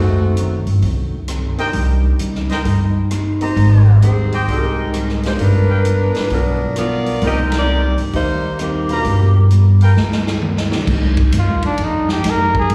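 Brassy and swinging, this big band swing passage, cut from a longer piece, rides on swung eighths over a minor-key progression. A mellow saxophone section carries the melody up front with light vibrato and a soft attack, while a natural, big-room drum kit with a boomy kick and medium-tuned snare works through ride, hi-hat, rim clicks, toms and crashes. A woody, pizzicato upright bass sits prominently in the mix, with a dark baby grand piano and a full-bodied fingerpicked jumbo steel-string acoustic guitar tucked in the background. A distant, roomy trumpet section adds tight stabs, the band hits an accent at 7.5 seconds, and after a drum fill a punchy, forceful solo trumpet steps in at 11.4 seconds with scooped notes and a smooth top. Slapback echo colors the horns, piano and guitar, and the sound is that of a live gig heard through the venue's PA, with recital-hall and small-room reverb.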